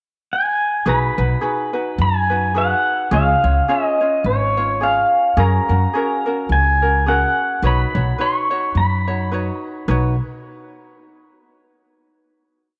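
A pedal steel guitar opens this dreamy, languid Hawaiian piece in B major at 106 BPM with a gentle swing, its clean, compressed electric tone sliding through volume swells and song-like motifs with slapback echo, joined at 0.9 seconds by a light, fingerpicked ukulele strumming open chord shapes and a woody pizzicato upright bass playing a two-feel of roots and fifths up front, all bathed in a moderate plate reverb before settling on a final chord at 9.9 seconds.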